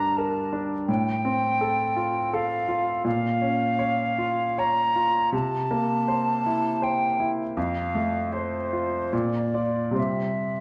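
An airy silver concert flute with a straight tone and crisp attack sings a lyrical, tender melody over a brilliant grand piano whose long sustain and audible action noise sit intimately up front in this romantic classical excerpt in F major, moving in a rubato 3/4 at 69-85 BPM through a wet recital hall reverb in a dark, warm production.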